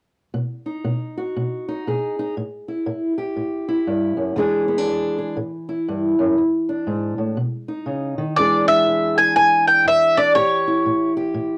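Acoustic country blues with a gritty, soulful swing, this excerpt from a longer piece opens on a dark, boxy fingerpicked parlour guitar up front from 0.3 seconds, joined at 8.4 seconds by a bowl-back mandolin whose picked double strings carry the melody in a high register until 11.1 seconds, all heard through the grain of a home cassette recording with moderate reverb.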